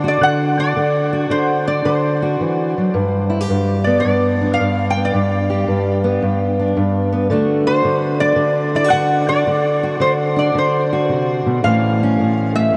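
Acoustic country blues in D mixolydian at 110 BPM with a swung 4/4 feel, this rollicking, swaggering duo cut from a longer piece sets an up-front lap resonator guitar, metallic and nasal with slide, fingerpicks and analog chorus, carrying the melody over a dark, fingerpicked steel-string acoustic guitar accompaniment, both playing throughout as the chords move from D to G and back to D before reaching A at 11.6 s, all drenched in a huge, dreamy reverb with vinyl crackle.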